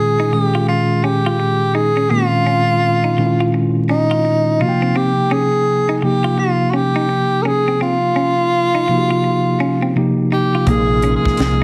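Soulful and introspective, this short passage from a longer R&B and neo-soul piece moves with a relaxed, swung sixteenth-note feel. A breathy tenor saxophone carries the melody up front in a jazz style, with vibrato and scooped notes, over a mellow, direct tine electric piano that holds the chords from the first moment. A twangy, picked clean electric guitar joins at 0.2 seconds with a second line set in the background and bathed in spring reverb. The harmony drifts from Bbm9 to F7sus2, and at 10.7 seconds, on a Bb7sus2 chord, three more parts arrive together: a dry, tight funk drum kit with a high-tuned snare, a dark, punchy fingered electric bass, and a full tonewheel organ with chorus vibrato and slow rotary speaker. The mix sits in a small room, heavily compressed into a radio-like sound and dusted with vinyl crackle.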